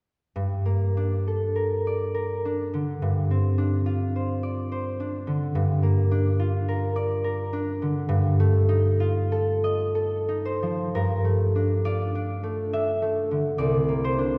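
Classical solo harp music in G minor, this short cut from a longer piece moves in a flexible, rubato 3/4 at roughly 58-72 BPM, carrying a wistful, mysterious mood. A single concert harp plays throughout, from 0.4 s to 14.4 s, its fingerpicked strings ringing across a span from C2 up to E5 with an acoustic, warm tone that sits up front. The harmony drifts through rich, extended colours, opening on Gmadd9 and moving through Dm7/G, Gm7 and F9/G over a G foundation. At 10.9 s the music turns to a new passage, settling on Gm9 before reaching C9 near the close. A lush concert hall reverb surrounds the instrument, and the listener seems placed further back in the room, so each note blooms and lingers in the space.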